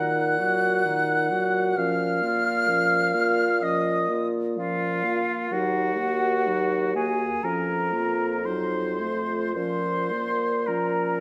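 All five winds of this quintet sound together from the opening moment of this solemn, elegiac passage, cut from a longer slow romantic movement in the classical tradition. An airy silver concert flute carries the melody high above, its bright, lifted tone shaped by vibrato and a soft attack. Close beneath it, an oboe sits up front with a second line, clear and lightly vibrato, while a clarinet and a mellow French horn fill in the accompaniment, the clarinet placed in the background. A dark bassoon anchors the bass from a distant, roomy position, with a touch of vibrato of its own. The pulse breathes freely in rubato over a brooding minor progression that leans onto an F7b9 at 8.4 seconds before settling home at 9.5 seconds, all within a moderate scoring-stage reverb that lasts through the 11.2-second passage.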